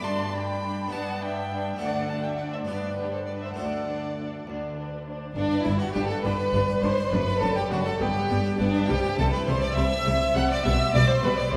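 Festive and brilliant, this baroque-style concerto movement in G major moves at 68 BPM in 6/8, with a distant, expressive solo violin carrying the melody with vibrato and portamento, while a dark, woody violin section also plays the melody in the background and a close violin section plays a rich second line. An airy Flemish-style harpsichord with two sets of strings fills out the accompaniment with a focused, smooth-topped viola section, and a lush cello section carries the bass until a smooth, even double bass section joins it at 5.4 s. A wet church reverb lasting 2.7 s gives this cut from a longer piece a resonant hall sound.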